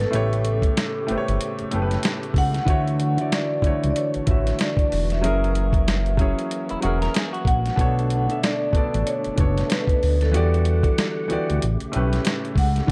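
A relaxed, swung sixteenth-note groove from a gritty, compressed sampler-style drum kit with a thumpy kick and up-front snare and hi-hat anchors this smooth neo-soul R&B excerpt, joined by a dark, sustained synth bass that sits forward in the mix. Over chords moving from A7 through Dmaj9, F#7, Bm9 and Em9, a ringing, metallic vibraphone with slow motor vibrato carries the melody while a clear, polished baby grand piano accompanies and a fat, lightly overdriven tonewheel organ with key click, chorus vibrato and slow rotary speaker holds chords in the background. A clean, scooped semi-hollow electric guitar adds a brief second line from 6.7 to 7.8 seconds, all within a dry, dusky production.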